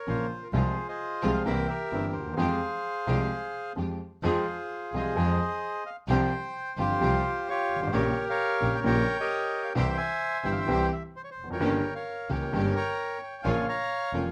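Sultry and passionate, this brief tango excerpt in F minor moves at 130 BPM in 4/4 with a rubato, pushing-and-pulling feel, cut from a longer piece. A reedy, dark bandoneon carries the melody up front from the very start, smooth in tone and ranging from F4 to Bb5. From 0.1 seconds an upright piano with a woody, vintage character and short sustain sits close beside it as accompaniment, while a single bowed double bass gives a rich, biting low line with vibrato and an airy, intense edge. Behind them, a bowed studio string section adds lush, focused stabs with a smooth top and vibrato, kept in the background. The harmony opens on Bbm and C7 before settling onto Fm at 4.2 seconds, where a second section begins and winds through Csus4 and diminished colours back to Bbm, all wrapped in a moderate club reverb.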